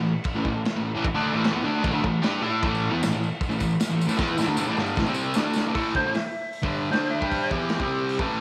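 Raw and swaggering, this garage rock excerpt drives at 153 BPM in a straight 4/4. A bright, double-tracked fuzz guitar riff sits up front over a crunchy, gritty breakbeat kit with a punchy kick, dark cymbals and a rolled-off top, while a jingly tambourine sits in the background for a few seconds. A drum fill from 4.2 seconds leads into a new section at 5.7 seconds, where a clean, twangy lap steel takes the melody with slide and volume swells, all in light studio reverb.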